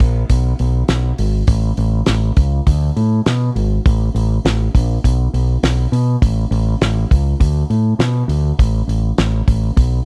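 Confident and sunny, this short classic rock cut rides a straight 4/4 groove from a growling fingered electric bass, overdriven and up front, alongside a damped 70s drum kit with a fat snare, tight kick and hi-hat, all captured in a dry, close 1970s-style studio sound.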